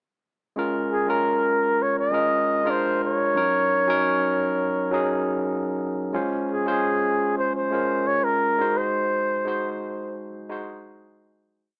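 Bittersweet and smooth, this short soul piece in straight 4/4 is a single verse that begins at 0.6 seconds and fades out from 8.9 seconds. A bright, barky tine electric piano carries the accompaniment, lightly overdriven with tube saturation through a combo amp, pushing drop2 chord voicings up front across a Bbm7, Bb7, Ebm7, Dbmaj7 and Ab7 progression. Over it, a breathy flugelhorn takes the solo melody in a pop style, its soft attack, light vibrato and smooth top giving a whispered, intimate feel. The horn builds its line from motif-based call phrases and sits up front beside the piano. Light reverb and small room ambience frame the pair, and the whole recording has a small speaker sound.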